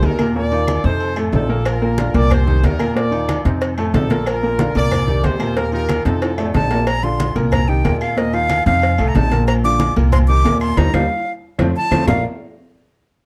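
Driven by a straight, danceable salsa groove from background congas, ringing timbales and agogo bells, woody claves and round cowbell and bongos, this festive excerpt sets a clear, present concert grand piano and a thumpy pizzicato upright bass up front beneath a tight horn section carrying the melody until 6.5 seconds, when a breathy, bright silver concert flute with crisp attack and vibrato takes over, all in a dark production with light reverb and drum fills and a band accent closing its phrases.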